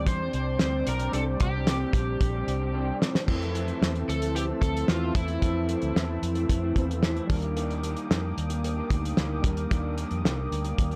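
The recording is dry and gritty, with barely any room sound, giving this nostalgic, dreamy bedroom pop fragment a close, homemade feel; it is cut from a longer piece. At 112 BPM in a straight 4/4 and F major, it is anchored by a cloth-damped drum kit that sits up front with a thuddy, fat snare, tight kick and dark, rolled-off cymbals, alongside a round, foam-muted fingered bass. An electric guitar through a small old amp adds a slightly broken-up picked accompaniment with a warbly pitch drift, while lo-fi synth keys warble in the background with cassette-tape wear and a mellow analog pad holds detuned sawtooth chords behind them. A bright, overdriven slide guitar carries the melody with subtle chorus and tape echo until 7.3 seconds. A drum fill from 2.7 to 3.3 seconds leads the harmony from Csus2 to Fmaj7, with a shift to Ebmaj7 as the slide drops out.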